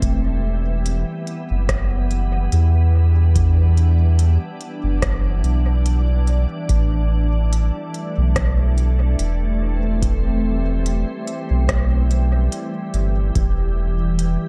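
A dark, warm digital ambience surrounds this hazy, spacious ambient dub excerpt at 72 BPM in E minor, with a swung 16th feel and chords moving from Em7 to Am7 at 6.7 seconds and settling on Em at 13.4 seconds. A soft, round sub bass with tube saturation sits up front, while a pure, organ-like pad holds sustained chords with slow attack, ensemble chorus and its own reverb. A deep, tape-toned electronic kick stays in the background until 13.5 seconds, and a crisp electronic kit of hi-hat and rim click, re-recorded in a large room, trails dub echo.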